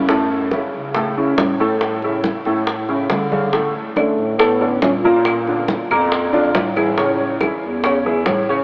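A clear, slightly detuned upright piano with analog chorus and a breathy, subtone bass clarinet open this sophisticated, lively Afro-Cuban jazz excerpt in A major at 139 BPM, joined at 0.1 seconds by tight, high-tuned bongos and thick-skinned congas in the background. After a drum fill at 3.3 seconds, woody vintage claves enter at 4.0 seconds as a dark, punchy trombone with tape echo states a brief, forceful melody until 5.4 seconds, while the chords move from F#m7 through Bb(#11) to Amaj7, all bathed in a huge, dreamy ambient reverb with an AM radio sound.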